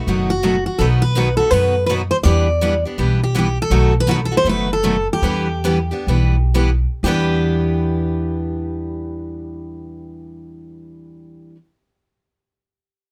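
A bright, full-bodied jumbo steel-string acoustic guitar opens this bittersweet, virtuosic excerpt of acoustic string swing in E minor, picking out accompaniment from the first instant. A second guitar with a boxy, concert-body tone joins it in support, while a woody, thumpy upright bass plays pizzicato on gut strings, its dark low end sitting up front. Just after, a dreadnought guitar with fresh strings carries the melody in a middle register. The swung 4/4 feel ranges from 116 to 165 BPM and slows down between 3.7 and 7.0 seconds as the harmony moves between B7 and Em7, before a new section begins at 7.0 seconds. Close, detailed microphones and light reverb keep the playing intimate and crisp.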